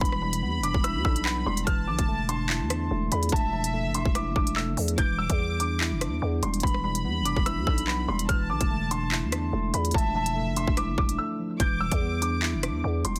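From the first second, a dark, boxy concert grand piano carries the melody high in its range over a drill drum kit, a growling 808-style bass, a tine electric piano and a violin section, all sounding together in this tense, menacing hip hop excerpt. The drill groove runs at 145 BPM in a half-time feel, in E phrygian, with the harmony moving between Em7 and Dmadd9/E. The drums sit up front with a hard-clipped kick, crisp hats, handclaps and rim clicks, while the buzzy, sine-based 808 hits with a fast attack and decays beneath them. The worn, slightly out-of-tune electric piano fills the middle with a clean, direct accompaniment, and the violin section floats above it as a soft, bowed second line, played sul tasto and washed in tape echo. A brief break arrives at 11.2 seconds before the opening section returns at 11.6 seconds, and the violins drop out at 12.8 seconds, all within a dense, heavily limited modern mix set in digital ambience.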